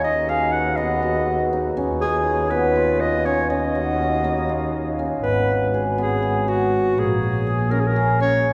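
Heard from further back in a concert hall with a wet 2.3-second reverb, this pensive, hypnotic piece of contemporary chamber music moves in 7/8 at 242 eighth-note beats per minute, tuned to A4 = 441 Hz. Up front, a breathy, jazz-inflected solo clarinet with light vibrato carries the melody over a bowed double bass singing the low line with smooth vibrato, while a hammered dulcimer rings out shimmering arpeggios and a close-miked, dry glass harmonica sustains glassy, ethereal chords. The harmony drifts through Abm7/Eb, Db7/Eb and Ebm9 before shifting at 5.2 seconds to Abm7 and Bbm7.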